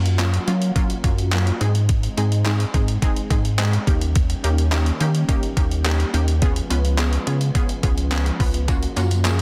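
A dry, dense and heavily limited mix opens this summery, carefree dance-pop excerpt at 106 BPM in Db major, its chords moving from Gbmaj7 through Ab, Eb7 and Db7 before landing back on Gbmaj7. A deep, round analog bass sits up front beside a thumpy, overdriven 8-bit drum machine of kick, handclaps and hi-hat, while a lush, bright sawtooth unison pluck carries the accompaniment, and both pluck and bass pump under sidechain compression. Behind them, a vintage organ-like string pad with ensemble chorus sustains soft-edged chords that pump with the same sidechain, and a jingly, band-limited tambourine slips in at 8.7 seconds.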